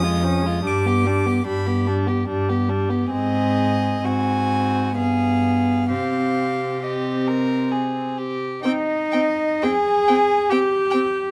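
A string quartet opens together in a melancholic, solemn classical movement in triple time with a rubato feel, its close, airy-bowed first violin floating high over the second violin's rich inner line, a warm viola accompaniment and an up-front cello bass, every player bowing sul tasto with a soft attack beneath light reverb in this brief cut from a longer piece.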